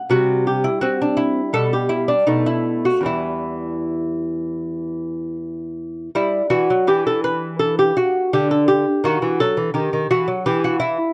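A solo lute, fingerpicked and delicate, sits up front with its nylon double courses and some octave-doubled strings, playing a serene, dance-like baroque-style piece in 4/4 with a rubato feel. Moving from a C chord through B7 to E minor early on, the short classical excerpt passes into its second section at 6.2 seconds, touching a diminished chord before settling back on E minor near 10.4 seconds. The sound is dry and close, like a 1970s studio recording.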